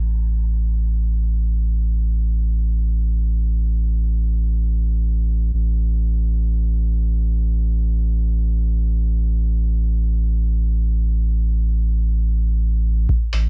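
Deep and nocturnal, this dub techno fragment drifts in free time, cut from a longer piece, with a dark production and little reverb. A soft, round sub bass sits up front around A1 from the start, sustained with a fast attack and a sidechain pumping, carrying the excerpt alone until an analog, tape-warm kick lands at 13.1 seconds. A compressed, muffled sampler-style hi-hat, low-pass filtered and re-recorded in a small room, follows quietly at 13.3 seconds.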